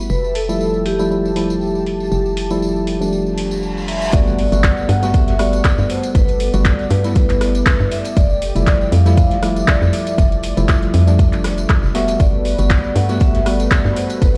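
This sunny deep house excerpt at 119 BPM in G major opens with a mellow, detuned sawtooth pad held in the background, dark organ-like stabs, and a hollow, knocking FM bass, each pumping to the sidechain. A ringing vibraphone with slow motor vibrato carries the melody through analog delay, and a jingly tambourine sits low in the mix. A deep house kit adds handclaps, rim clicks and metallic hats under a low-pass filter, with a 16th-note swing, as the chords move between Fmaj9 and Gmaj9. A reverse cymbal at 3.5 seconds leads into an electronic impact at 4.1 seconds, where the drop brings in a deep, up-front electronic kick and a very quiet, gritty breakbeat kit with a rolled-off top. The track sounds as if played on a big system in a bare stone room and captured to cassette tape.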